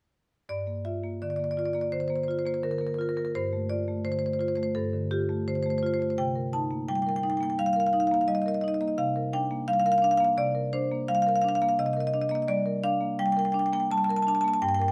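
A close-miked, full-bodied marimba sits up front in a moderate stone room, its medium hard mallets giving each note a warm tone. This contemporary classical piece for solo marimba is flowing and reflective, moving at a rubato 85 BPM in 4/4 across a span from G2 to A5, tuned to A4 = 441 Hz. Cut from a longer work, it drifts through Gm7, F69/G, Cm7 and Bb69/C between 0.5 and 14.9 seconds.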